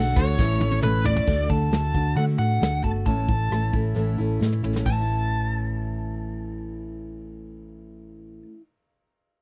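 This is a short folk rock and heartland rock passage in A major at 134 BPM in a straight 4/4, with a jangly, hopeful mood. A nasal, overdriven lead guitar with a parked wah carries the melody from the start until 8.4 seconds, riding over a picked steel-string acoustic guitar whose woody tone and old strings sit up front in the accompaniment. A dark, round hollow-body short-scale electric bass anchors the low end with a punchy presence, while a soft brush drum kit from a small room, with a punchy kick and medium-tuned snare, plays from 0.2 to 5.0 seconds and adds fills along the way. A piping, scooped tonewheel organ through a slow rotary speaker holds very quiet sustained chords at the opening before dropping out at 1.3 seconds. The harmony moves from A to D and back to A, and the dry, close 1970s-style studio sound keeps every part intimate and direct.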